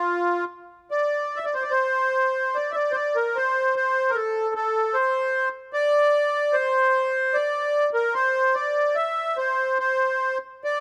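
A solo accordion carries this brief Celtic folk fragment, its reedy, sweet, dark voice colored by a light tremolo tuning and set up front in the mix. The piece moves in a slow 3/4 at around 74 BPM, though the beats fall unevenly and the time breathes with a rubato feel. The melody sits in a middle register, between F4 and E5, giving the line an intimate, singing quality. The mood is longing and haunting, the smooth tone lingering over each phrase. Close, detailed microphones capture the instrument with a light touch of reverb, and the passage, cut from a longer piece, runs for 10.8 seconds.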